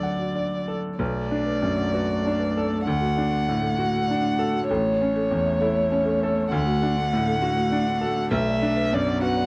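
A dry, close 1970s-style studio sound with light reverb frames this tender, hopeful neoclassical piece in D major, moving in a rubato 3/4 at 98 BPM, where a veiled, con sordino solo violin sings the melody with vibrato and portamento over a soft-attacked muted cello line, a brilliant, up-front grand piano accompanies with short sustain, and from 0.2 seconds a woody, rustic folk marimba with slapback echo adds arpeggios in the background as the chords move through D, Bm7 and A.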